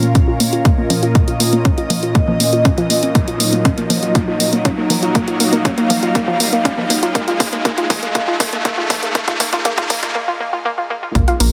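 A melancholic, hypnotic melodic techno build-up opens on a smooth, detuned analog pad holding sustained chords, an ethereal airy pad with phaser, and soft, warbling pluck arpeggios with dub echo under a filter sweep. Bright, overdriven hi-hats and congas sit up front, with a punchy overdriven kick joining almost at once, while both pads and the pluck pump against the sidechain. An electronic riser runs from 0.8 s as a drum fill builds, and after a short break from 10.2 s a deep, round analog bass note arrives at 11.2 s, all within a dense, heavily limited mix with light digital ambience.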